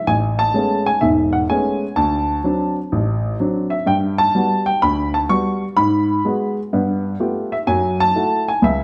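An intimate, up-front baby grand piano with audible action noise and short sustain carries this playful solo jazz cut from a longer piece, swinging in A major at 126 BPM through chords from Amaj9 and D7 to G9 and F#m7, spanning E1 to C#6 inside a dark, warm production with a wet large-studio reverb.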